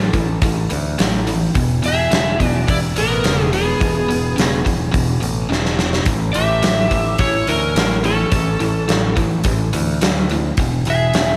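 A big arena sound with a lush hall reverb frames this driving, raunchy blues rock and southern rock excerpt in E mixolydian, moving at 106 BPM in a straight 4/4 over A5, E and A chords. An overdriven slide guitar carries the melody with slapback echo and digital delay, a twangy, compressed lead guitar adds a lighter second line beneath it, and a biting, double-tracked rhythm guitar plays the low riff in the background. A growly, amped electric bass and an up-front acoustic kit with a tight kick and medium-tuned snare drive the groove, with a drum fill at 5.5 seconds.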